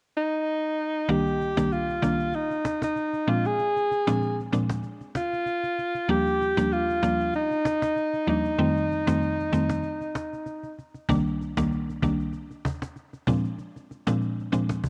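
A cassette-tape coloring and a moderate spring reverb give this breezy, romantic afrobeats passage the intimate character of a home recording, tuned to A4 = 436 Hz. At 96 BPM in 4/4 with a light swing on the sixteenths, a clear alto saxophone opens alone at 0.2 s, carrying the melody as a punchy, up-front pop-style solo with a smooth top and light vibrato. At 1.1 s a woody, round FM synth pluck arrives with a fast attack, a noise layer and chorus, sounding bright and percussive in the foreground, while a snappy acoustic cajon with snares, played with hard hands, sits close and dry further back in the mix. The harmony moves through Cm9, Bb7, Ebmaj7 and F9 before returning to Cm9 and Bb7. Around a brief break, the saxophone stops at 10.7 s, leaving the decaying synth pluck and cajon to carry the closing section.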